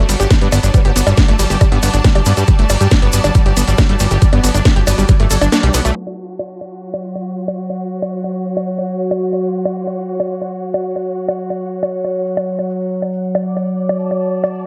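A straight 4/4 pulse at 138 BPM drives this alien, hypnotic psychedelic trance cut in F# phrygian, taken from a longer piece and opening mid-drop. An overdriven, knocking electronic kick sits up front until it drops out at 5.5 s, alongside a techno kit of cracking snare, hi-hat, ride cymbal and bongos, plus a grainy tube shaker tucked close and dry in the background. In the first 5.9 s a fat, detuned sawtooth bass with tube saturation anchors the low end, while a punchy, warbling unison pluck riff with delay and sidechain pumping runs above it, and a faint formant-sweep wobble bass flickers briefly near 0.7 s. Throughout, a resonant, wave-folded drone holds sustained chords with chorus, phaser and pumping, and a distant, biting string section adds a lush bowed texture in the upper register. A band accent lands at 5.5 s, and from 6.0 s a filter sweep moves across the drone as the second section unfolds over the remaining drums and strings, all set in light reverb and digital ambience.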